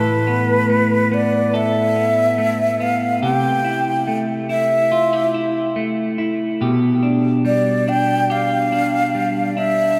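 Melancholic and ethereal, this dream pop piece drifts at 71 BPM in a straight 4/4, cut from a longer work. A breathy, mellow silver concert flute carries the melody between B4 and G5, its crisp attack and unsteady vibrato sitting up front under a diffuse ambient delay. Beneath it, a warm, clean electric guitar plays picked arpeggios from A2 to A4, colored with subtle chorus and the same diffuse delay. Both parts play throughout the 10 seconds, moving through Asus2, C6 at 3.2 seconds and G7/B at 6.6 seconds. A lush hall reverb with a 2.8-second decay soaks the whole mix, giving it a hazy, floating depth.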